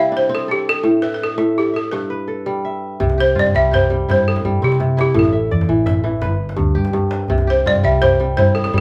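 A woody, buzzing balafon melody struck with hard rubber mallets and a bright, ringing fingerpicked kora open this hypnotic West African traditional excerpt in 12/8 at 112 BPM in C major, joined at 3.0 seconds by a dark, round hollow-body electric bass and a deep djembe sitting in the background, all captured as a band playing live in one room with moderate large studio reverb.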